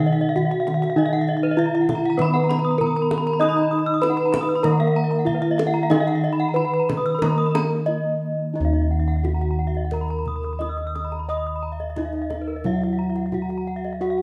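Up front, bossed bronze gongs carry the bass with a round, beating tone in this shimmering, hypnotic excerpt of Balinese gamelan in Eb pelog, moving at 88-99 BPM in a straight 4/4. Bronze metallophones in paired tuning ring out the melody and two strands of arpeggios, struck with wooden and horn mallets, while a lower metallophone accompaniment drops away at 8.6 s, after a break that begins at 7.5 s. A tight, compressed kendang played with soft hands ticks beneath, all set in light reverb.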